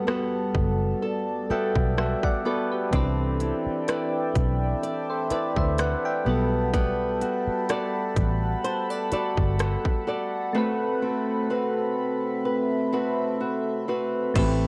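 Soft, mellow electric-piano-like synth keys with chorus and tremolo open this moody, late-night contemporary R&B excerpt at 63 BPM in A dorian alongside a shimmering, retro pulse-width pad pumping under sidechain and fingerpicked nylon-string guitar arpeggios with tape echo and audible finger squeak, before a trap drum kit with a hard-clipped kick, crisp hats and rim clicks arrives at 0.1 seconds and a dark, round, foam-muted vintage fingered electric bass joins at 0.5 seconds, all moving through Gmaj9, Cmaj9 and Am69 in a dry, gritty cassette-tape sound wrapped in digital ambience.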